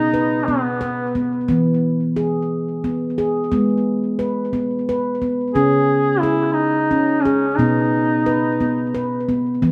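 A short excerpt from a longer piece, set in a reverberant studio room that gives the recording a soft, lingering wash. This is meditative world music in a swaying 6/8, hypnotic and unhurried. A close-miked stainless steel handpan sits up front throughout, playing ringing, mellow arpeggios with soft fingertips, its full tone touched by delay. A warm duduk, a folk-style solo voice over the handpan, carries the melody with vibrato and scooped notes, heard briefly at the opening and then returning at 5.5 seconds until 8.9 seconds. Though up front, it has a distant, roomy character, bathed in plate reverb and delay.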